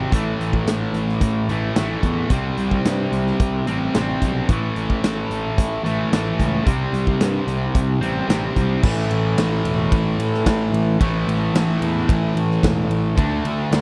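A straight, driving 4/4 pulse from a huge arena kit of punchy kick, medium-tuned snare, hi-hat, ride and crash carries this confident classic rock fragment, where a sludgy, double-tracked overdriven guitar riff sits up front, rocking between A5 and C5 power chords before reaching D5 near 13.2 seconds, while a fuzzy, picked electric bass rumbles low beneath, in a dry, close 1970s-style studio sound.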